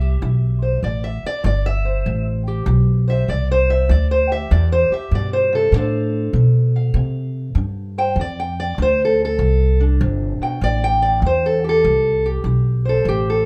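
A moderate studio reverb surrounds this smoky, mournful fragment of swung acoustic country blues in 4/4, where a boxy, parlour-toned fingerpicked steel-string guitar sits up front and carries the melody as a solo for the full 13.5 seconds over a dark, woody, thumpy pizzicato upright bass, the harmony moving from Am7 to Dm7 at 5.7 seconds and back to Am7 at 10.6.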